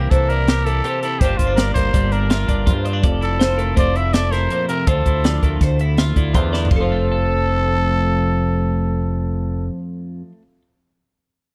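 Math rock with a Midwest emo lilt, this bright, playful excerpt in F major moves at 164 BPM in a straight 5/4, cycling through C7, Gm7, Fmaj7 and Dmadd9 before settling on F at 6.7 seconds. A raspy, growling trumpet with light vibrato carries the melody over two twangy, clean twelve-string electric guitars, one picking the accompaniment and the other picking high arpeggios, both bathed in spring reverb, while an overdriven fingered bass sits up front beneath them. A crisp fusion kit with a high-tuned snare and tight kick drives the groove until a fill at 6.5 seconds and drops out at 6.8 seconds, all captured in a dry, close 1970s-style studio room.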